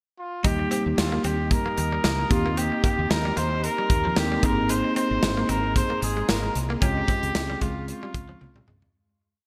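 1980s-style pop at 113 BPM with a lightly swung 16th-note feel in Eb mixolydian, nostalgic and romantic, where a clear trumpet with light vibrato, set distant and roomy yet up front, carries a motif-based melody beginning in a short pickup. Mellow tine electric piano holds close-voiced chords through a phaser, an ethereal pad with slow attack, ensemble chorus and phaser glows in the background, a twangy muted single-note guitar line sits behind it in lush chorus and delay, and a woody fretless bass drives eighth notes over a modern drum kit with a big gated-reverb backbeat. Moving through Eb, Cm7/Eb, Abadd9 and Dbmaj7 in a bright digital hall, the verse fades out from 6.8 seconds, closing on a drum fill at 8.4 seconds.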